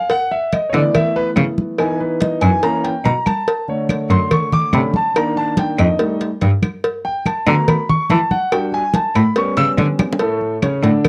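Afro-Cuban jazz at 143 BPM in a straight 4/4, this short cut from a longer piece has a sophisticated, sunny mood. A concert grand piano, natural and up front with a deep bass, opens the excerpt at 0.0 seconds and carries a solo through to 10.2 seconds. It moves through mostly rootless voicings from G6 and C#m7 to Cm7, F9, Gmaj7 and A7 before settling on D5. Beneath it, a bright, bowed cello plays the bass line between F2 and E3 with light vibrato, an intense tone and a smooth top, sitting up front as the loudest part. The percussion bed combines thick-skinned, damped congas played with hard hands, a tight, high-tuned cowbell and bongos recorded close and dry, and woody claves tucked in the background, with a drum fill at 10.0 seconds. A moderate studio reverb surrounds the band, and the home cassette recording lends the sound a homespun character.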